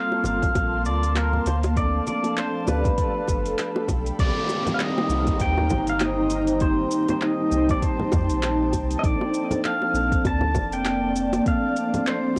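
A fingerpicked pedal steel guitar sits up front with slide and volume swells, its clean, compressed melody trailing tape echo over a wistful, relaxed sunset chillout groove cut from a longer piece. A mellow tine electric piano through built-in speakers and an ethereal, detuned pad with chorus and 12-bit grit hold the chords, while a round sine sub bass, close, dry bongos and congas, a deep electronic kick and a deep house kit with metallic hi-hat, handclaps and shaker carry a swung 16th-note feel. A downlifter sweeps through from 4.2 to 9.0 seconds, and the whole mix carries the softness of a cassette home recording in a small, wet booth.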